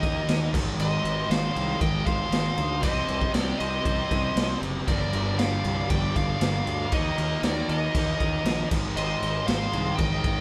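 A stone room with moderate reverb gives this aggressive, driving hard rock excerpt the feel of a band playing live together, with the raw garage drum kit sitting up front, its boomy kick, medium-tuned snare and crash cymbal sounding gritty and saturated with a rolled-off top and a pumping room sound. Two picked rhythm guitars churn out the riff in the background: one heavy, bright and high-gain with distortion, the other sludgy, dark and overdriven. Beneath them, a fingered electric bass is fed through fuzz and overdrive, coming across growly and punchy. On top, a smooth overdriven lead guitar carries the melody in a dark tone, joined by an octave-fuzz lead guitar playing a distorted second line just below it. A very quiet analog string pad holds sustained chords with a silky, evolving, detuned sawtooth shimmer and ensemble chorus. The harmony moves through Eb5, Ab, Cm and Gm before circling back to Eb5 and Ab, with every part playing throughout the 10.4 seconds.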